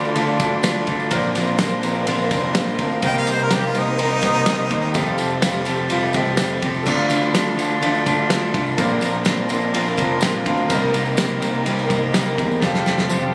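A twangy, slightly broken-up electric guitar through a small old amp sits up front with a picked riff, giving this wistful, reflective excerpt of folk and heartland rock its lo-fi bite at 125 BPM in a straight 4/4. Beneath it, a bright, punchy picked electric bass and a loose indie drum kit with a fat snare, tight kick and rolled-off top drive the groove, while a jingly tambourine sits in the background. A shimmering, octave-doubled twelve-string acoustic guitar adds full-bodied picked accompaniment, complete with finger squeak, and a very quiet concert grand piano with deep bass and a lush, woody bowed string section fill out the harmony over a cycle of Dm, Bbadd9, Cm7 and Fadd9. A clear harmonica with classical-style vibrato steps forward for a brief second line from 3.1 to 5.2 seconds. The piano slips in a short fill at 10.0 seconds and the drums close with a fill at 12.6 seconds, all heard through light club reverb with the roomy feel of a phone recording.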